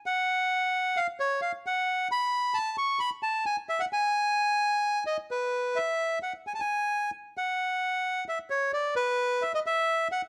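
A reedy, bright bandoneon sits up front in a close, detailed recording with light reverb. This short excerpt from a longer tango piece has the instrument playing alone in its upper register, with a free, rubato feel that lends it a tense, dramatic mood. It plays from 0.1 to 10.2 seconds, carrying the whole passage by itself.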